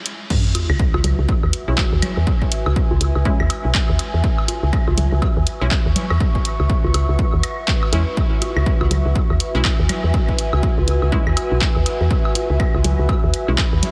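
A round, woody FM bass pumps up front against a dry, punchy electronic kick in this cool, hypnotic minimal techno, with a dry analog drum machine's crash, handclaps and hi-hat, tape-echoed bongos, woodblock, claves and congas, a very quiet sub drop at 0.3 seconds, a warbling, nostalgic lo-fi pad with chorus and phaser, and a faint, crisp detuned wavetable chord stab entering at 1.7 seconds.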